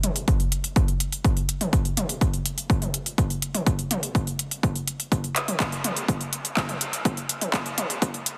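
Dark and melancholic, this short techno fragment at 124 BPM in a straight 4/4 is cut from a longer piece and works as a build-up across its full 8.4 seconds, carried by a filter sweep. A techno drum kit of handclaps, hi-hats and toms sits up front, its smooth hats and toms given sidechain pumping and high-pass filtering, with the snare and room sound also thinned by high-pass filters. An electronic kick drum joins at 0.3 seconds, a punchy, layered hit that stays prominent until 8.1 seconds. Both drum parts carry a tape-warm character and the colour of being re-recorded in a small room. Light reverb and a dense, heavily limited modern master with a high-pass filter give the whole a tight, pressurised finish.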